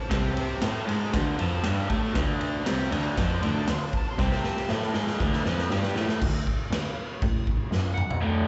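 This sounds like a live club gig heard through the venue's PA, with a small room's ambience, club reverb and a top end that stops around 8.0 kHz. It is a raw, rowdy garage rock fragment at 119 BPM in a straight 4/4, cut from a longer piece. An up-front, double-tracked electric guitar drives the riff with a bright, overdriven, lo-fi picked tone, dressed in spring reverb and slapback echo. Beneath it, a single bowed cello plays the bass line with a nasal, reedy, boxy gut-string character and its own overdrive. In the background, an electric slide guitar carries a slightly broken-up, fingered melody with slapback echo. The acoustic kit sits up front, gritty and saturated, with a punchy kick, medium-tuned snare, toms, crash and ride in a pumping stone room, and fills arrive at 4.2 seconds and again at 7.7 seconds as the harmony shifts from a D5 power chord to D at 6.2 seconds.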